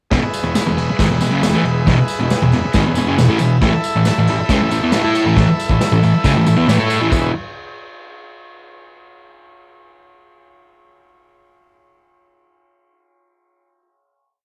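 A straight garage stomp groove in four drives this short, raw and swaggering garage rock piece, played on a distant, roomy brush kit with a tight kick, a medium-tuned snare, ride and crash, and a rolled-off top end. Up front, a dark, double-tracked fuzz guitar hammers out a distorted, picked power-chord riff that carries the piece. Behind it, a vintage combo organ holds buzzy triad chords with a light vibrato, adding a brief transistor fill from 2.7 to 3.6 seconds. A jingly, compressed tambourine sits in the background, adding a saturated shimmer. The riff gives way to a final chord at 7.1 seconds, all captured as a home cassette recording with light reverb.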